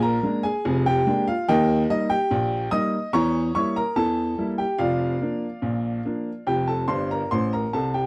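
Ragtime piano in Bb major, lively and cheerful, moving at 72 BPM in a straight 2/4. A single upright piano carries the whole 8.1-second fragment, cut from a longer piece, ranging from F1 up to Eb6. Its tone is woody and boxy, placed up front and intimate, with audible action noise and a touch of slapback echo. The harmony runs from Bb7 to Eb, through Edim7 and Bb/F, before landing on F, and the piano closes with a fill from 6.9 seconds. Light reverb surrounds a dry, close recording with a 1970s studio character.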